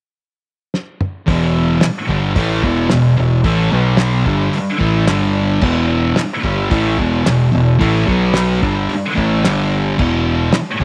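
A straight 4/4 pulse at 110 BPM drives this raw, swaggering slice of garage rock, cut from a longer piece. A cloth-damped drum kit opens with a fill at 0.7 seconds, its thuddy, dry sound built on a fat snare, a tight kick, toms and dark cymbals with a rolled-off top. At 1.3 seconds a thick fuzz guitar arrives up front, double-tracked and picked, churning a low riff around E5, B5, Emadd11 and G5. A growling fingered electric bass enters alongside it, bright and overdriven. From 1.8 seconds a very quiet group handclap adds a hollow, close touch. Light reverb gives the whole a small-room feel.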